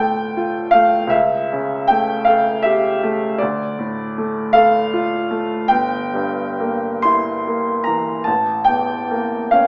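Mournful and yearning, this brief excerpt of a romantic classical nocturne in D minor drifts in a slow, rubato 12/8 at about 42-55 BPM by the dotted quarter, carried by a solo upright piano that sits up front with a woody, vintage tone and long sustain, ranging from G1 to C6 as it moves from Dm through A7/C# and Edim/G, set in a wet recital hall reverb with a small speaker sound.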